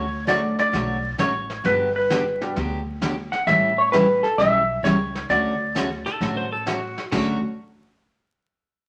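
A swung 4/4 at 132 BPM drives this playful, cheerful western swing country passage in D major, where a dark, clean lap steel carries the melody up front over a bright, jumbo picked acoustic guitar with finger squeak, a woody, thumpy pizzicato upright bass and a vintage brush kit with dark cymbals and a punchy kick, while a warm upright piano with long sustain comps briefly from 0.3 s and a twangy, fingerpicked pedal steel adds a second line with volume swells from 6.1 s, set in moderate studio reverb with vinyl crackle.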